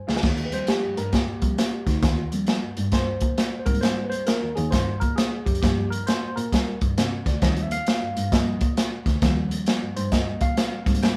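Recorded live in one room with light reverb, this joyful, danceable excerpt of uptempo 1960s-style soul in Eb major at 134 BPM, with a swung 4/4 feel, opens on a drum fill from a crunchy, saturated breakbeat kit with a tight kick and dark cymbals sitting up front, while a worn, slightly out-of-tune tine electric piano, lightly overdriven through a combo amp with phaser, takes a solo from 0.2 seconds over Eb6, Abmaj7 and Gm7 chords, and a single bowed cello carries the bass line with dark vibrato and expressive portamento.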